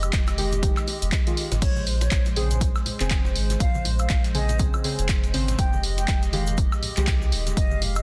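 A punchy, layered electronic kick sits up front in this smooth deep house excerpt, with sidechain pumping on a round, dark analog bass, deep, warbling chord stabs with chorus and tape echo, and a hollow, detuned soft pad moving between Fm9 and Bbm9. An overdriven analog drum machine supplies crash, handclaps, hi-hat and woodblock, while a grainy tube shaker, very quiet close congas and bongos, and a gritty, tape-colored sampler-style kit with tambourine fill in the background. At 1.6 seconds a breathy concert flute enters with expressive vibrato and dub echo over a dry, dense, heavily limited mix.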